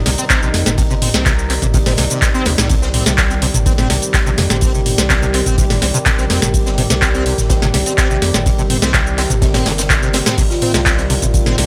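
A booming analog drum machine sits up front in this hypnotic, driving acid house track at 125 BPM in C minor, tuned to A4 = 436 Hz. Its crisp snare, metallic hats, handclaps, cabasa, toms and crash cymbal ring through a large room, with a short room on the snare, clap and hats. A deep electronic kick anchors the straight 4/4, and a very quiet, gritty acoustic garage kit with a rolled-off top adds hi-hat and snare from a bright stone room. A squelchy, resonant sawtooth acid bass carries the riff with a filter sweep, tube saturation, chorus and dub echo, over a thick, saturated triangle sub bass that pumps with sidechain compression. A warbling, detuned vintage pad holds sustained chords on Cm with a slow attack and chorus, and a woody marimba note with dub echo appears in the background at 10.5 s, all under light reverb in this short section cut from a longer piece.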